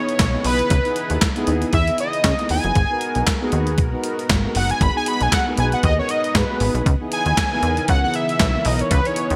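A fat, nasal analog synth lead with detuned sawtooth, ring modulation and digital delay solos up front over a late-night, funky early-eighties boogie funk groove at 117 BPM with a 16th-note swing. It is backed by a plucky, punchy analog bass, a clean 12-bit drum machine with thumpy kick, handclaps and gated reverb, round, brassy synth accompaniment with chorus, and a lush string machine in the background. Everything moves through C#m9 and G#m9 in a bright, plate-reverbed mix cut from a longer piece.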